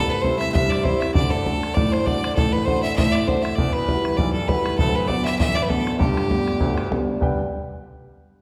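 Celtic folk reel, lively and rollicking at 198 BPM in G major with a light swing, where a biting, bright bowed fiddle with light vibrato carries the melody up front until 6.9 seconds over an intimate baby grand piano whose action noise is audible, a tight, damped bodhran entering at 0.2 seconds, the fiddle and piano sitting in a reverberant recital hall while the chords move from C through D, Emadd9 and D6 to G in this short cut from a longer piece.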